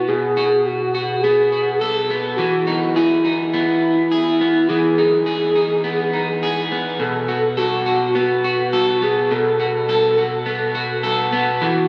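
Blissful and dreamy, this dream pop passage, cut from a longer piece, sets a warbling, nostalgic lead of detuned triangle and sawtooth tones, soft in attack and sustained with vibrato, portamento, chorus and tape echo, over a slightly broken-up, picked electric guitar playing arpeggios up front through lush chorus and tape echo, the pair sitting in a huge, wet ambient reverb and captured on a phone in the room.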